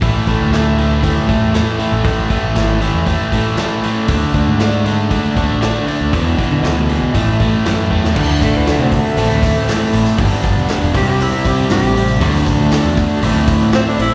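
A straight 4/4 pulse at 118 BPM drives this gritty classic rock excerpt, as a crunchy overdriven guitar up front and a second, compressed guitar in the background play riffs with slapback echo over A5, D5 and E5 power chords. A growling, overdriven picked bass and a vintage drum kit with a punchy kick and dark cymbals anchor the groove, and the drums play a fill at 7.9 seconds. From 8.4 seconds a raspy tenor saxophone, with light vibrato, scooped notes, plate reverb and slapback echo, takes a solo over D, Am, G and C chords while a jingly tambourine joins in the background, all heard as a live gig through the venue's PA with light recital hall reverb.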